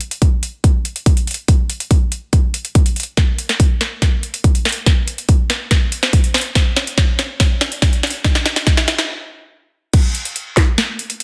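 An overdriven trap drum kit opens the passage, its sharp snare, metallic hi-hats and crash cymbal carrying a bittersweet, emotional future bass feel at 142 BPM in a half-time 4/4, and a punchy, layered electronic kick drum joins up front from 0.2 seconds. The passage is a build-up with a long drum fill from 3.2 seconds, a brief stop at 9.1 seconds, and a drop at 9.9 seconds, cut from a longer piece. Light reverb surrounds the drums, and the master is dense and heavily limited in a modern style.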